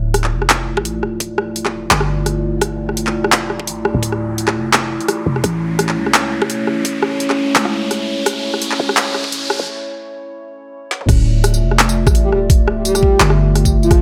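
Set in a moderate echo chamber, this cinematic, spacious half-time drum and bass excerpt builds under a filter sweep from a moody detuned analog pad carrying 12-bit sampler grit and sidechain pumping, a growling, buzzy 808-style bass, an up-front overdriven kit with a woody snare and bright hats, an electronic riser and a knocking overdriven kick arriving at 0.8 s, then pauses for a brief break and drum fill before the drop at 11.1 s, where a breathy flute-like synth lead with chorus and delay enters at 12.2 s.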